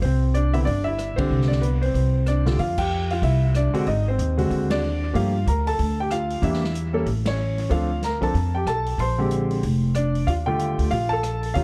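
Swinging, relaxed jazz piano trio at 187 BPM in F major, cut from a longer piece, where an intimate concert grand with audible action noise and analog delay carries the melody over a woody, up-front pizzicato upright bass and a softer swinging big-band kit of punchy kick, medium-tuned snare, hi-hat, ride, crash and rim click that also carries analog delay, with band accents at 1.1, 2.7 and 4.7 seconds, lush extended chords, a small-room ambience, an echo-heavy mix and a faint mains hum.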